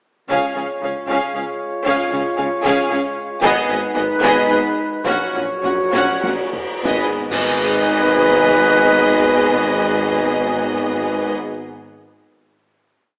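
A mellow, roomy trumpet plays stabs over this dark, heroic cinematic orchestral piece in 3/4, where a clear, intense violin section carries the melody above a lush second violin line with expressive portamento, both bowed in a driving ostinato, while focused violas, rich cellos, a smooth-topped double bass section and a tight French horn section of swelling chords fill out the background alongside a very quiet tuba. Heavy compressed taiko drums pound an ostinato until 8.1 s, and bright cymbal swells, crashes, concert snare and bass drum join at 3.4 s. The music slows into a drum fill and band accent that land on a final held chord at 6.9 s, all of it steeped in scoring-stage reverb and filtered through an AM radio sound.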